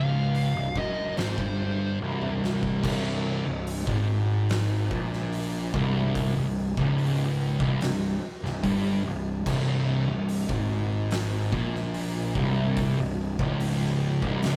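A dark, thick fuzz guitar riff anchors this hypnotic, heavy stoner and doom metal excerpt at 72 BPM, joined by a second warm fuzz guitar in the background and a growly, punchy fuzz bass with tube-saturated overdrive, while a compressed fuzz lead guitar sings a brief melody until 2.0 seconds. An oversized low-tuned drum kit with a boomy kick, fat snare and dark cymbals, set in a bright, pumping stone room, enters at 0.3 seconds and plays a fill from 2.0 to 2.8 seconds, all in a gritty rehearsal-room recording with moderate studio ambience.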